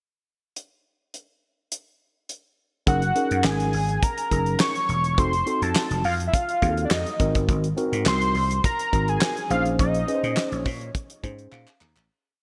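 A bright, polished 1980s-style digital production with a light touch of small-room reverb frames this slick, danceable early-eighties boogie funk piece. A dry, damped 70s drum kit opens alone at 0.6 s with a pickup bar, its tight kick, hi-hat and fat snare layered with handclaps driving a mid-tempo boogie beat up front. At 2.9 s the verse arrives as a growly, punchy slap bass, amped with tube saturation, digs into a syncopated line with chromatic approach notes, while a mellow, clean tine electric piano heard through its built-in speakers pushes rootless chord voicings decorated with grace notes and short fills. Over them, an up-front analog lead in sawtooth and square waves, detuned with a sub octave, chorus, vibrato and a filter sweep, sings sustained, motif-based call phrases with a fast attack. The chords move from Gb69 through F7b9 and Ab7 to Bbm11, and a fade-out begins at 9.8 s as the electric piano and drums each add a closing fill.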